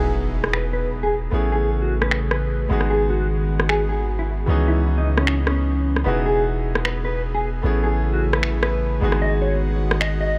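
A lightly reverberant digital ambience frames this bright, lush slice of future bass at 152 BPM in a half-time 4/4 feel, in E major, moving through Emaj7, Amaj7, G#m7 and C#m9. A dark, clean electric guitar carries the melody through analog chorus and digital delay, over an intimate baby grand piano with audible action noise and delay, a breathy detuned pad with chorus in the background, and a deep, up-front sine 808 bass with long decaying notes, while a filter sweep on an analog synth pad runs throughout. A very quiet sub drop and impact open the passage in its first 1.3 seconds, and tape-warm electronic rim clicks and finger snaps enter at 0.4 seconds with low-pass filtering on the hats, snare and cymbals.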